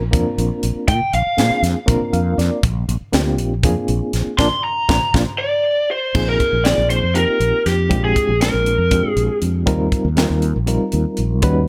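A reedy electric piano with fast tremolo and plate reverb and a round, punchy fretless bass open this bright, slick jazz fusion excerpt in 7/8 at 239 BPM in Bb mixolydian, joined by an airy, polished drum kit with a high-tuned snare and tight kick, while a lo-fi, overdriven lead guitar through a small cranked amp, treated with plate reverb and tape echo, enters briefly at 0.9 seconds and returns at 4.4 seconds over a band accent, a drum fill and a piano fill, as the chords move from Bb9 through Bb7sus4 and Bb13 to Eb69.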